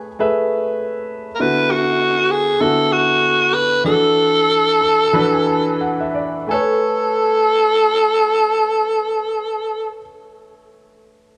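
Soul in A major at 85-100 BPM with a swung 16th feel, lush and romantic, heard as a short cut from a longer piece set in a small room with light reverb. A concert grand piano with deep bass sits up front, voicing Amaj9, D69 and E9sus4 chords, while a growling alto saxophone solo enters at 1.4 s, bright and raspy with vibrato, scooped notes and a smooth top in a jazz style. The tempo slows from 1.4 s to 6.5 s, and the piano plays a fill from 4.5 s to 6.5 s.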